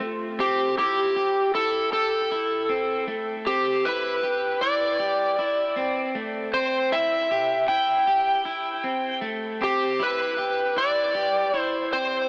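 Drenched in a huge, washing ambient reverb and heard through a small-speaker sound, this short dream pop excerpt feels floating and blissful. A slightly broken-up electric guitar picks arpeggios over a single Am7 chord, coloured by subtle chorus and tape echo. From 0.4 seconds, a warm, overdriven slide guitar sings the melody up front in a higher register, trailing its own tape echo.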